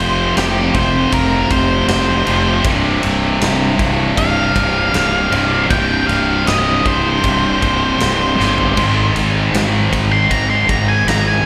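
An octave-fuzz lead guitar takes a dark, picked solo across the whole clip, its distorted tone riding a slapback echo above a brooding, gritty blues rock power-trio groove with a southern rock edge. Beneath it, a tight, bright distorted rhythm guitar, double-tracked and up front, plays a low riff with its own slapback echo. A fuzzy fingered electric bass growls up front, overdriven and amped, holding down the bottom of the trio. The huge arena drum kit enters at 0.4 seconds with a fat snare, punchy kick, crash, ride and toms in a big, natural room, and drops in a fill at 8.4 seconds. The chords move from F5 to C5 and then to Ab5 at 8.8 seconds, and the short cut from a longer piece sounds like a live gig heard through the venue's PA, bathed in recital hall reverb.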